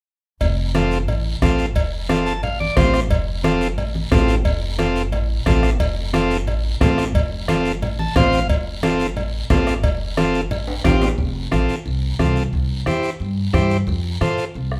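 Joyful and danceable, this cumbia runs at a brisk 178 BPM in 4/4 with a straight feel, sitting in F major and cut from a longer piece. An overdriven combo organ, vintage and buzzy, sits up front carrying the accompaniment between C4 and A5, with transistor organ fills around 2.1 and 7.8 seconds. Beneath it, a woody, dark upright bass played pizzicato on steel strings holds the low end from F1 to A2, also close and present. The percussion is layered: a soft-beater bombo in the background, bright low-tuned congas struck with hard hands in a small room, a raspy guiro, and ringing metal-shell cowbell and timbales that drop out at 11.1 seconds during a drum fill. The harmony rests on F before moving to C at 12.5 seconds and returning to F, all set in a moderate large studio reverb.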